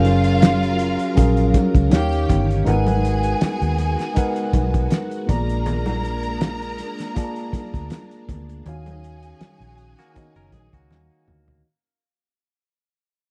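A fading fragment of lush 1970s-style soul at a relaxed 80 BPM with a gentle sixteenth-note swing opens on a mellow tine electric piano, a smooth bowed string section with vibrato carrying a second line, shimmering chorused string-machine chords in the background, a dark, round, foam-muted fingered bass and faint ringing congas, joined almost at once by a dry, muffled, cloth-damped drum kit with a fat snare and tight kick, all moving through F#maj7, D#7, G#m7, A#7 and D#m7 before a twangy, spring-reverbed clean guitar riff enters very faintly at 10.0 seconds and the drums play a fill from 10.9 seconds.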